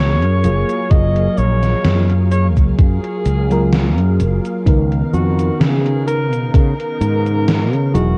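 Woozy and faded, this vaporwave fragment drifts at 64 BPM in F# major, cut from a longer piece and tuned a touch flat, with a light swing on the sixteenths. A warm, roomy alto saxophone carries the melody from a distant vantage, its vibrato colored by tape echo, while a lush, dreamy FM electric piano with a soft pad layer supplies mellow, chorused accompaniment. Behind them, a silky vintage string machine holds sustained chords through phaser and ensemble chorus, and a bright, punchy fretless electric bass sits up front. A gated 80s digital drum machine enters at 0.2 seconds with cabasa, hi-hat and a gated-reverb snare, overdriven and re-recorded in a small room, and an electronic kick joins at 0.9 seconds with a thumpy, overdriven weight. The harmony moves from F#maj9 to C#13 at 4.7 seconds, all captured dry with the hazy character of cassette tape.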